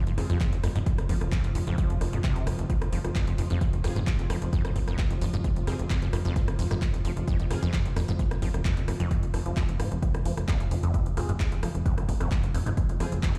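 A straight, driving 4/4 pulse anchors this industrial, hypnotic slice of peak-time techno, cut from a longer piece and built on a single F minor chord. A punchy, layered electronic kick sits up front from 0.4 seconds, joined by an analog drum machine with a tape-warm tint carrying handclaps, hi-hat and rim click. Underneath, a tight, nasal sequencer bass with a fast filter pluck pushes forward with sidechain pumping, while a squelchy, resonant acid saw riff ranges through the low register with analog chorus and delay. Deep in the background, a swarming, detuned sine drone with granular texture and built-in reverb sustains tension throughout. A thick, aggressive rave stab, bright and detuned with a moving notch, flashes in at 0.2 seconds and returns from 3.8 and 11.2 seconds, its chorus, reverb and delay set back behind the groove, all within a big, reverberant room sound.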